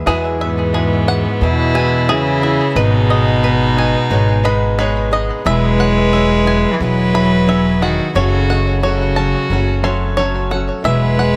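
In this anthemic, nostalgic folk excerpt at 89 BPM in E major, a boxy old ladder-braced acoustic guitar and a short-sustained grand piano sit in the background while a twangy fingerpicked banjo spins delayed arpeggios over a woody, thumpy pizzicato upright bass, and from 0.4 seconds a rich, floating sul tasto cello carries the delayed melody up front as a reedy, airy-bowed fiddle adds a second line over chords moving from Eadd9 through G#m and F#m in a light studio reverb.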